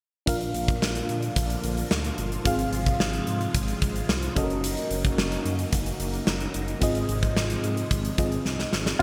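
A huge arena drum kit with gated reverb, punchy kick and bright cymbals drives this nostalgic, dramatic 1980s-style pop excerpt at 110 BPM, over a mellow, warbling FM electric piano, a swirling phased string machine and a smooth synth bass, all set in a lush hall and bright digital production, until a drum fill at 8.5 seconds leads to a single intimate note from a dark baby grand piano at 9.0 seconds.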